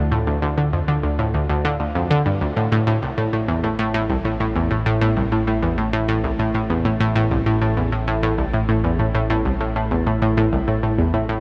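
A vast, cavernous reverb surrounds this expansive, mysterious stretch of ambient, sequencer-driven space music, where a round, detuned analog pluck riff with chorus and tape echo sits up front over a fat, wave-folded analog bass while a very quiet concert harp rings out fingerpicked arpeggios, all moving from Dm to Am at 2.6 seconds.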